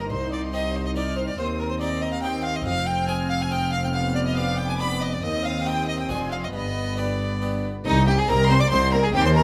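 A stormy, driving baroque-style concerto movement in C minor, cut from a longer piece, moves at 140 BPM in 3/4 as a clear, focused solo violin sings up front over a close, expressive violin section carrying the high melody, a more distant second violin line, a lush viola section and plucked, bright Flemish-style harpsichord in the background, and a smooth, even cello section alongside a soft-attacked double bass section on the bass, all set in moderate recital hall reverb as the harmony travels from Cm through Fm and G7/F to Dm7b5/F and G before landing on Cm at 7.9 seconds.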